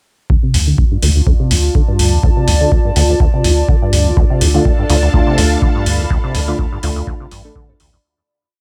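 Acid house at 124 BPM in D minor, trippy and raw, with a lightly swung groove built on a deep four-on-the-floor electronic kick, metallic open hi-hats and a round, dark analog bass pumping off the beat, while a squelchy, resonant sawtooth acid riff with accents and slides runs through a filter sweep, chorus and delay, a warbling lo-fi tape-like pad drifts in at 1.2 seconds with phaser and reverb, and from 4.2 seconds a lush vintage string machine arrives, followed soon after by soft, detuned syncopated chord stabs moved in parallel, before the piece fades out from 5.5 seconds.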